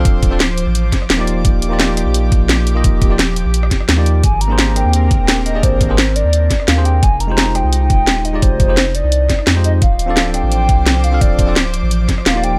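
A hollow, woody synth lead with a clarinet-like voice enters at 4.2 seconds and carries the melody over this dreamy liquid drum and bass excerpt at 172 BPM, its vintage tone warbling through chorus, vibrato and the blur of cassette tape and tape echo. Beneath it, a bell-like tine electric piano plays clean, direct accompaniment through a digital delay, while an airy, breathy pad holds sustained chords, its chorus-thickened body pumping against the sidechain. A deep, round sine sub bass sits up front, anchoring the progression from Dm7 through Ebmaj9, Abmaj9#11 and Fm9 before returning to Dm7 at 9.8 seconds. The drums pair a knocking electronic kick with a layered kit of cracking snare, rim clicks and bright hi-hats, the kit placed up front in the mix. The overall sound is intimate, with little reverb, letting the mellow pad and the lead's dark, soft warble float over a straight 4/4 groove.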